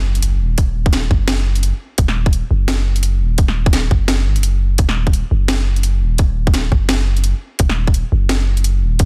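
A dense, heavily limited modern master with little reverb gives this short cut from a longer half-time drum and bass track a tense yet spacious feel, with a swung sixteenth-note lilt. A long, sustained 808-style bass opens at 0.0 seconds and sits up front, its deep, sine-like tone mellow despite a fast attack and tube saturation, holding to the lowest register as each note decays. A produced drum kit of cracking snare and bright hi-hats enters at 0.2 seconds, carrying its own overdrive and reverb and set lower than the kick and bass. A barely audible electronic impact flickers past around 0.5 seconds, just before the electronic kick drum lands at 0.6 seconds, tight, layered and overdriven, pushed forward in the mix with a touch of studio reverb. The result is a heavy, low-slung groove built from a looming bass and hard-hitting drums.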